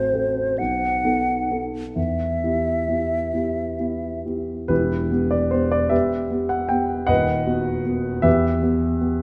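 A moderate stage reverb gives this brief romantic classical duo a spacious ring, with both the flute and the grand piano placed up front. The mood is solemn and yearning, and the slow, rubato pace in a lilting compound metre lets the phrases breathe freely. The silver concert flute carries the melody in a pure, hollow tone, closely miked, tongued and touched with vibrato, and it sings until 4.2 seconds. The concert grand accompanies throughout in a dark, mellow voice with deep bass, and it continues alone after the flute drops out, through to the end at 9.2 seconds. The harmony moves from diminished and dominant colours toward the home minor chord, and the passage is cut from a longer piece.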